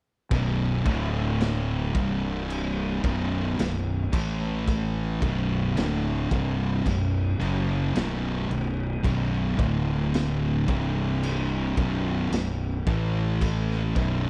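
From 0.3 s, two thick fuzz guitars and a growly, overdriven fingered bass grind out a slow, hypnotic stoner and doom metal riff together, circling through B5, D5, C5 and A5 power chords, landing on Bm at 5.2 s and then cycling back through D5, C5, B5 and A5. A raw garage drum kit in a small, pumping room pounds underneath with a punchy kick, medium-tuned snare and dark, gritty crash cymbals. One guitar and the bass sit up front in a dry, tape-saturated mix, and the heavy riff runs until it is cut off at 14.3 s.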